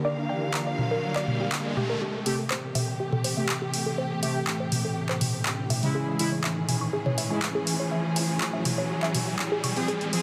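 A straight 4/4 pulse at 122 BPM drives this cinematic melodic techno excerpt in A phrygian: overdriven, up-front electronic drums with handclaps, hi-hat and toms arrive at 0.5 s beneath dark bowed strings holding sustained chords with vibrato and portamento, a woody, percussive wave-folded pluck spinning arpeggios through chorus and delay, fat brassy analog synth stabs coloured by chorus, cassette tape and delay, and a riser in the background, while a mellow, warbling analog drone joins at 2.5 s as a build-up and a filter sweep on the pluck carry the music from Gm through Am7 to C#m in a dense, heavily limited mix with light reverb.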